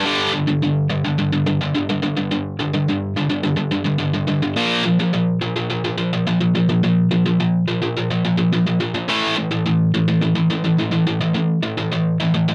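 Heavy and aggressive, this short metal fragment, cut from a longer piece, moves at 106 BPM in a straight 4/4 feel, tuned slightly below standard pitch at A4 = 439 Hz. A single distorted electric guitar carries the whole 12.5 seconds alone, picked and double-tracked, sitting up front in the mix between G2 and Bb3. Its tone is bright and overdriven, with a cassette tape coloring that adds a homespun grit. The riff rests on power chords, starting on G5, shifting to Bb5 at 4.6 seconds and landing on A5 at 9.1 seconds. A moderate booth ambience with a short decay keeps the sound tight and close, fitting its home cassette origins.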